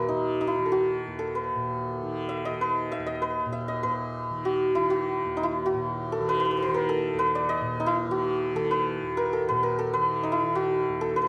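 This is an Indian classical piece in raga todi, centred on Eb and cut from a longer performance. The mood is introspective and solemn, set in 4/4 with a straight feel at 195 BPM, and the tempo speeds up across the full 11.3 seconds. A hammered santur carries the melody up front, its bright, ringing tone shimmering between Eb4 and Fb5 and trailed by a slapback echo. Beneath it, a softly plucked tanpura holds a buzzing drone from Eb2 to Eb3, sitting well back in the mix with a warm glow. The sound is a dry, close 1970s-style studio recording with light reverb, tuned to A4 = 445 Hz, and a new section begins at 3.8 seconds.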